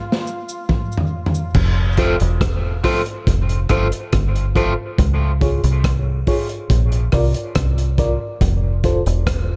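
A round, punchy fingered electric bass sits up front in this hazy, spacious dub reggae excerpt, entering at 1.6 s after a drum fill from a gritty, saturated breakbeat kit with dark cymbals and a tight kick. A brief vibrato flugelhorn note and a compressed cabasa open the piece, both trailing dub echo, before a twangy, slightly broken-up electric guitar and reedy electric piano stabs with fast tremolo join at 2.0 s, each also carrying dub echo. The echo-heavy mix has light reverb and moves through F, Db and Bb chords.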